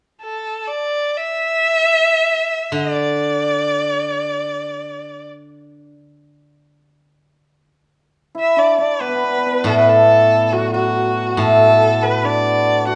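In free time, this pastoral, festive excerpt of Chinese traditional chamber music in D gong mode opens with a bright, focused solo erhu singing the melody with vibrato and portamento from 0.2 seconds; a silvery, fingerpicked steel-string zither enters low beneath it with ringing accompaniment at 2.7 seconds, and a shimmering hammered dulcimer comes up front with a prominent second line at 8.3 seconds, all held in light reverb.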